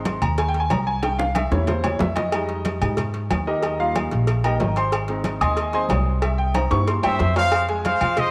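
Salsa at a driving, fiery 185 BPM in F minor, this short excerpt opens on a clear, present grand piano solo over a woody, thumpy upright bass, with ringing congas sitting in the background alongside round, low-tuned cowbell and bongos and vintage metal-shell timbales with agogo bells, all set in a moderate echo-chamber reverb. Drum fills arrive at 1.0 and 6.5 seconds as the chords cycle from Ab through C7 and Fm7 to Eb and back. At 7.0 seconds a tight, bright trumpet section enters up front with light vibrato and a soft attack, carrying the melody to the end.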